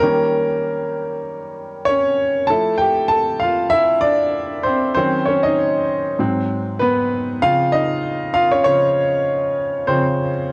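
Lightly swung sixteenths at 98 BPM in 4/4 carry this lush soul fragment, played by a solo grand piano, clear, intimate and up front with audible action noise and a cassette-tape tint, moving from Eb7 through Fmaj9 and Ebm7 to Ab7#9 and Dbmaj9 across 10.5 seconds of moderate studio reverb on a home cassette recording.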